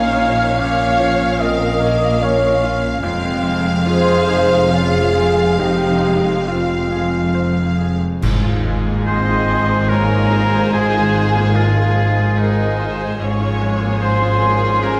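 Bittersweet and sorrowful, this cinematic, emotional film-score fragment drifts at 73 BPM in a rubato 3/4, with a lush, distant violin section carrying the melody over vibrato-rich bowed strings: a close, focused second violin line, smooth violas, and lush cellos and double basses, the basses adding expressive portamento. Mellow French horns hold sustained chords in a vintage classical style, while a solo bright oboe, a pure, crisp-attacked flute ensemble, and a warm clarinet that stops at 7.9 s weave second lines, accompanied by a brilliant, intimate grand piano with audible action noise and a very quiet, ringing, fingerpicked harp playing arpeggios. At 8.2 s the harmony shifts to an Ab6 chord as clash cymbals and concert bass drum punctuate a brief accent in a live room, all within a wet scoring-stage reverb.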